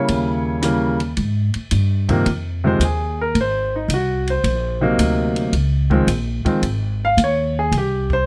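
Lightly reverberant and natural-sounding, this relaxed, playful jazz piano trio fragment swings along as a clear, deep-bottomed concert grand sits up front carrying the melody and takes a solo from 1.2 s, over a woody, thumpy pizzicato upright bass on gut strings and a dry, compact cocktail kit of hi-hat, tight kick, ride with dark cymbals and rim clicks sitting lower in the mix.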